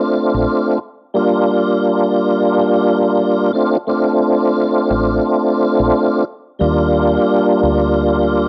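Swung 16ths at 88 BPM in 4/4 drive this soulful, confident boom-bap hip-hop fragment in Bb major, where an up-front, lightly overdriven tonewheel organ with chorus vibrato and a slow rotary speaker carries a rootless Bbmaj7 along with Gm7 and Ebmaj7 chords through cassette-tape filtering, while a dark, round, foam-muted dub fingered electric bass sits lower in the mix, touching in briefly at 0.3 seconds before settling in from 4.9 seconds, all inside light reverb and digital ambience on a homemade cassette recording.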